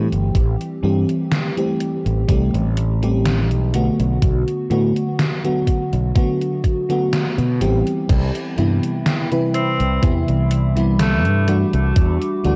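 A lush, dreamy FM electric piano with a soft pad layer sits up front in this melancholic, hazy vaporwave excerpt, its detuned chords soaked in chorus, cassette tape wear and analog delay over a punchy fretless electric bass. A gated 80s digital drum machine with gated reverb on the snare and a thumpy electronic kick give a straight, slow 4/4 pulse, with a band accent at 7.1 seconds. A warbling, lo-fi tape-like pad drifts in at 8.8 seconds in the background with 12-bit sampler grit, and a bright alto saxophone with light vibrato and tape echo plays a brief melody from 9.5 seconds, all within a dry, gritty hardware sound.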